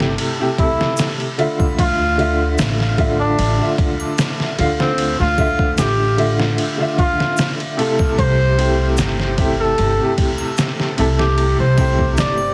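A veiled, bucket-muted trumpet enters at 0.6 seconds with a distant, vibrato-laced jazz solo trailed by dub echo, floating over a dark, smoky trip hop groove at 75 BPM in D minor, where a bright upright piano with tremolo and tape echo sits up front beside a woody pizzicato upright bass and a pitched-down, muffled sampler-style drum kit with thumpy kick and overdrive, while tube shaker and triangle join in the background at 1.0 seconds, the whole mix squeezed into a heavily compressed, radio-like sound with light reverb.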